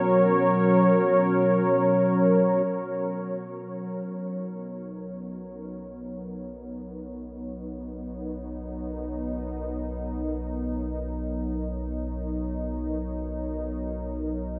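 In free time, this serene ambient passage in B major rests on a smooth, detuned sawtooth pad holding a Bmaj9 chord with soft attack and chorus, sitting up front in a dreamy mix soaked in huge reverb. A string-like, bright bowed drone flickers in at 2.7 seconds, barely audible, as the pad and synth drone fade in. From 5.3 seconds a deep, ominous rumbling drone settles on a low B beneath, its dark, long-released tone adding weight to the peaceful haze.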